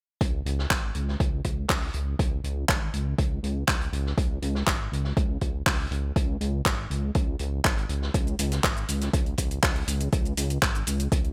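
Expansive and euphoric, this progressive house excerpt, cut from a longer piece, rides a straight 4/4 groove built on an overdriven, deep electronic kick and a dark, rumbling detuned saw bass that beats and pumps with sidechain and tube saturation, both sitting up front. Around them, a gritty acoustic indie kit adds a fat, saturated snare and high-passed, pumping hats with a rolled-off top, while from 0.7 s a layered deep house kit brings overdriven handclaps, hi-hat and shaker. The mix stays dry, with little reverb.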